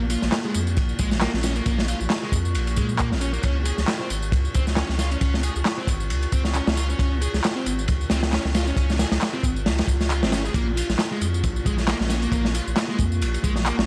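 A crunchy breakbeat drum kit leads this short, energetic breakbeat cut, its tight kick, medium-tuned snare and dark ride cymbal sounding gritty and saturated up front, with a rolled-off top and a lightly swung 16th-note feel at 135 BPM in 4/4. Layered electronic tambourine and handclaps sit beneath it, re-recorded in a small room for a produced, roomy edge. A deep, thick saturated sub bass anchors the low end with fast-attack, sustained notes, while a double-tracked fuzz guitar plays a picked, distorted riff through a digital delay. In the background, a moody detuned analog pad holds slow-attack chords with a sub octave, treated with chorus, phaser and sidechain pumping. The funky groove moves from Bb minor to Db at 3.4 seconds and back to Bb minor at 10.5 seconds, all wrapped in small-room ambience and vinyl crackle.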